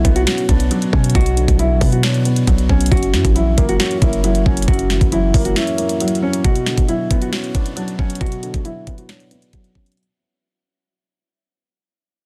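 Trap-flavored hip hop excerpt at 136 BPM in a half-time feel, melancholic and menacing in B harmonic minor, moving from Bmadd9 to F#7 and back. A dark, full-bodied nylon-string guitar carries the melody over a mellow, boxy grand piano with audible action noise, both muffled by a low-pass filter, while a deep, boomy 808 bass with a sine core and noise layer drops out at 5.6 seconds for a brief break. Up front, the trap kit's knocking kick, sharp snare and bright hats carry a gritty vintage sampler edge, and from 6.4 seconds a filter sweep and fade-out close this dense, heavily limited cut in a small room ambience.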